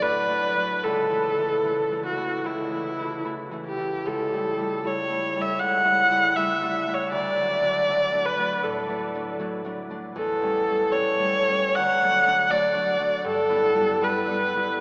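A bowed viola and a concert harp begin together, opening a serene romantic duo in the classical tradition that moves with a gently rubato pulse in four. The viola carries the melody up front, its one player drawing a rich, smooth, even line colored by vibrato. Beneath it, the harp supplies a fingerpicked accompaniment of acoustic, ringing tones set lower and softer in the balance. The harmony settles on D and moves through A7 before returning home, closing on Em/G at 13.3 seconds. The sound is drenched in cathedral reverb that makes the duo feel as if heard in a vast, echoing space, yet filtered through a thin AM radio quality. The passage is cut from a longer piece and runs to 14.8 seconds.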